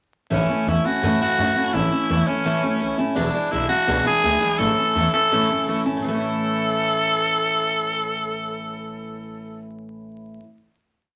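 Vinyl crackle and a wet studio reverb frame this short, rollicking, rowdy rockabilly piece, where a raspy, breathy tenor saxophone sits up front with vibrato, punching out hook-like motif phrases over an A to E7 and back to A progression. A bright, full-bodied steel-string acoustic guitar strums open chord shapes in eighths, while a woody, thumpy upright bass plucks a quarter-note figure underneath. The tune settles onto a final chord at 6.0 seconds, with the saxophone ringing until 9.7 seconds and the guitar and bass sustaining just past it.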